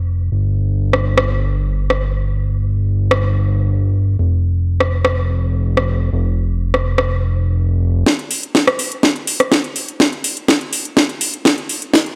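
Dreamy and bittersweet, this excerpt of progressive house at 124 BPM opens on a fat, nasal, detuned sawtooth bass pumping up front until 8.0 seconds, joined at 0.9 seconds by an overdriven house kit with a cracking snare and metallic, filtered hats set in a large room, before a punchy, overdriven electronic kick enters in the background at 8.1 seconds for a drum-fill build-up under light reverb.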